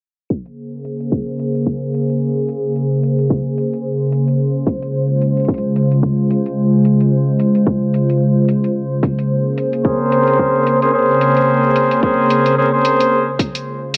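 Light reverb and digital ambience, darkened by a low-pass filter and a filter sweep running throughout, frame this gritty, swaggering glitch hop excerpt at 110 BPM in B-flat minor with a swung 16th-note feel. A warbling, nostalgic, detuned tape-like pad with chorus and sidechain pumping sustains Bbm9 and Dbmaj7 chords over a punchy, up-front electronic kick and warm electronic hi-hats, and at 9.8 seconds a mellow, jazz-style horn section joins with octave-doubled stabs carrying vintage 12-bit sampler grit and tape echo.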